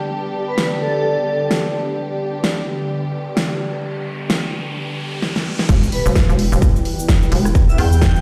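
A swung 16th-note groove at 129 BPM in 4/4 drives this gritty, bouncy bass house excerpt in E minor, where lush, woody bowed strings and a warbling, nostalgic lo-fi pad pump under sidechain over a G chord, an airy, dreamy lead with chorus, phaser and delay drifts in at 0.5 seconds, a big-room dance kit with a huge snare plays a fill at 5.2 seconds near the end of an electronic riser that builds from 2.9 seconds, and at 5.7 seconds the drop lands on E minor with a punchy, up-front kick and a hollow, knocking overdriven FM bass, the mix ringing with the reverb of a bare stone room.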